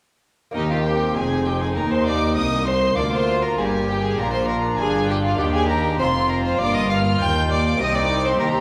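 Opening at 0.5 s, this festive, lively baroque-style concerto movement sets a period-style, gut-strung violin section on the melody over a dark, nasal viola section in the background, a bright, delicate fingerpicked lute, and reedy cello and double bass sections on the bass, while at 0.6 s a second gut-strung violin section enters on a second line and a single warm solo violin enters with its own melody, the whole ensemble heard through the wet reverb of a church or concert hall.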